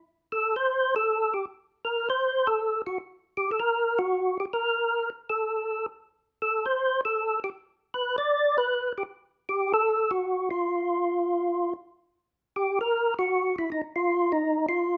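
Set in a light reverb, this soulful, bluesy jazz excerpt at 157 BPM in a swung 4/4 features a solo percussive tonewheel organ, fat and lightly overdriven with key click, third harmonic percussion, chorus vibrato and a slow rotary speaker, playing up front between Eb4 and D5 from 0.3 to 15.0 seconds.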